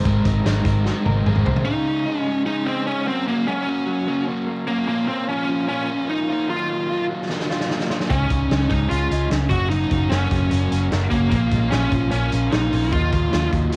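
Crunchy overdriven rhythm guitar and a dark, tremolo-tinged, delayed guitar playing arpeggios through a small old amp open this nostalgic, bright jangly indie pop piece in Db major at 149 BPM, with a round, foam-muted vintage bass and a loose, gritty indie drum kit briefly joining before a drum fill ushers in an up-front, distorted bluesy lead guitar melody at 1.6 seconds, after which the bass and drums fall away until the drums return with another fill at 7.3 seconds and the bass at 8.1 seconds, the whole carrying the light reverb and vinyl crackle of a home cassette recording.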